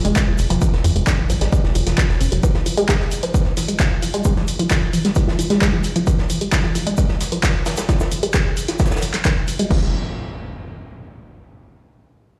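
Driving, hypnotic peak-time techno built on a squelchy, detuned resonant blip pluck riff over Fm with phaser, tube saturation, dub echo and a filter sweep, a nasal sawtooth sequencer bass that drops out at 2.4 s, a punchy up-front kick, tape-warm analog drum-machine crash, claps and hats, and a soft brushed kit with a rolled-off top, with the pluck, bass, hats and cymbals pumping in a stone-room reverb until an electronic impact lands at 9.7 s.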